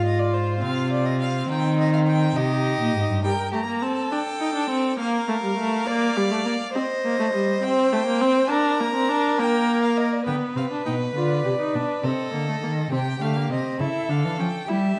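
A dark, reverberant recital-hall sound surrounds this solemn, contemplative baroque-style fugue for string quartet in C minor, moving at 68 BPM in a straight 12/8 and cut from a longer piece. The first violin carries a rich, smooth melody above a focused second violin line, while the viola sits close and up front with even, smooth accompaniment, every player bowing with vibrato. The cello's warm, expressive bass, with soft attacks and portamento, drops out at 3.2 seconds and returns at 10.3 seconds as the second section begins on a rootless G7.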